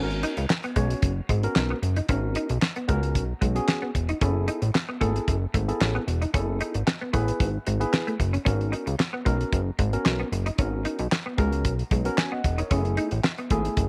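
Early-eighties boogie funk with a late-night, danceable mood, this short excerpt rides a thick, detuned analog bass with a plucky filter and a dry, up-front 70s drum kit of tight kick, fat snare, hi-hat and handclaps, while a worn, slightly out-of-tune tine electric piano comps through minor eleventh chords and a dark, fingered clean guitar riff shimmers with ensemble chorus in a small room.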